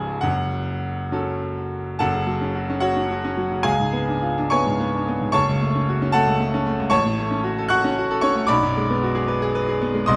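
In a rubato 6/8 pulse of roughly 66-78 BPM counted in dotted quarters, this stormy, passionate classical virtuoso piano study in F# minor sets a solo grand piano up front with a bright, brilliant, smooth and vintage tone and long sustain, ranging from C#1 to F#6 through F#m, C#7b9 and G#m7b5/B harmonies, heard through close, detailed microphones in a moderate recital-hall reverb, in a passage cut from a longer piece that shifts into a new section at 2.0 seconds.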